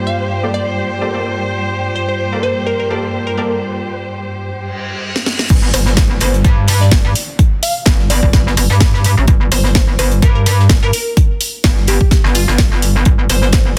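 A dense, heavily limited and dry mix carries this bouncy, aggressive bass house excerpt in G minor at 127 BPM, opening on dark, bowed chamber strings holding a Gmadd9 chord alongside a bold orchestra-hit-like synth stab and a warbling, lo-fi tape-like pad, all three pumping to the sidechain, while a crystalline wavetable pluck carries the melody throughout; after a break marked by a reverse cymbal and downlifter, a house drum kit with a cracking snare slips in with a short fill just before the drop lands at 5.5 seconds with a punchy electronic kick, a very quiet tight funk kit, and an up-front metallic, overdriven wobble bass.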